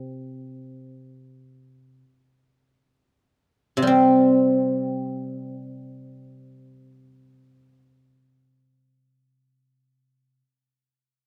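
A solo guzheng, played with fingerpicks, carries this short fragment of Chinese traditional music, its silvery, ringing tone placed up front. The mood is contemplative and elegant, and the playing moves in free time, staying within a low register from C3 to C4. The opening passage slows down as it runs to 3.9 s, and a second passage follows until 10.0 s. The warm, acoustic instrument sits in a moderate concert hall reverb that lends its plucked notes a gentle trail.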